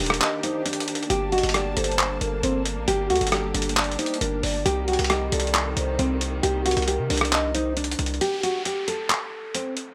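A compressed, pitched-down sampler-style drum kit sits up front in this menacing hip hop and trap cut, its gritty handclaps, hi-hat and rim click riding a hard-hitting half-time feel. Beneath it, a punchy 808-style bass with a fast attack and decaying sine body hits heavy, while a fingerpicked nylon-string guitar carries the melody with a full-bodied classical tone softened by a low-pass filter. A symphonic string section holds lush bowed chords with smooth vibrato, and a hollow, woody clarinet-like synth lead drifts mellow in the background as a second line, thickened by chorus and analog delay. The harmony moves from Eb through Gmadd9 to Cm7, with a brief break near the start. At 8.2 seconds the strings and bass stop and the chords fall away, leaving guitar and drums against an electronic downlifter, the drums running on to 9.9 seconds, in a dry, raw hardware sound cut from a longer piece.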